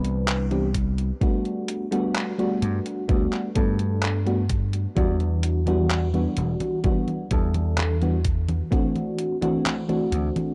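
This vaporwave cut, taken from a longer piece, drifts at 64 BPM in a straight 4/4 with a nostalgic, faded mood, moving from Cmaj7 through Gmaj7 and Em7 to D9 in G major. Up front, a mellow FM electric piano carries the accompaniment with a soft, round, dark tone, its notes striking quickly and then decaying through analog chorus and tape echo, with a faint noise layer beneath. A vintage slap bass sits equally forward, amped and punchy, anchoring the low end. A detuned 8-bit drum machine supplies congas, handclaps and hi-hat with an overdriven, sampler-style edge, while a thumpy, overdriven electronic kick joins at 0.7 seconds and drops out at 8.9 seconds. The whole recording has a dry, gritty hardware character with cassette tape texture and a light touch of reverb.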